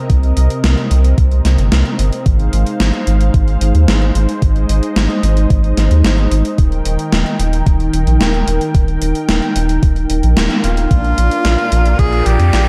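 A dark, lightly reverberant mix carries this nostalgic, cinematic synthwave excerpt at 111 BPM, where a detuned, warbling analog pad with lush chorus and sidechain pumping sustains chords from Cm7 through Ab6 and Eb over a round, deep analog bass, a thumpy overdriven electronic kick and a gated 80s drum machine playing hi-hat and a snare that carries gated reverb, until a band accent at 10.4 seconds leads to a bright tenor saxophone with scooped notes and delay at 10.6 seconds, mellow sawtooth synth brass stabs with vibrato on Bb, and a background riser from 11.8 seconds.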